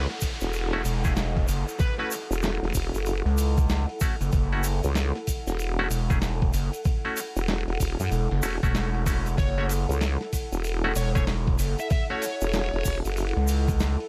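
A playful, funky glitch hop excerpt over a single F#m7 chord, where a gritty, distorted synth bass with oscillator sync and filter sweeps sits up front beside a nasal, wobbling vowel-sweep bass with chorus, a thumpy pitched-down electronic kick and a sampler-style boom bap kit of hi-hat and medium-tuned snare with studio ambience, a grainy egg shaker, hollow, stringy clav stabs with sidechain pumping and digital delay, a warbly, nostalgic tape-like pad with chorus and built-in reverb, a background downlifter ending by 4.3 seconds, and a bright overdriven lead guitar with digital delay that plays briefly at the start and returns from 9.4 to 13.0 seconds.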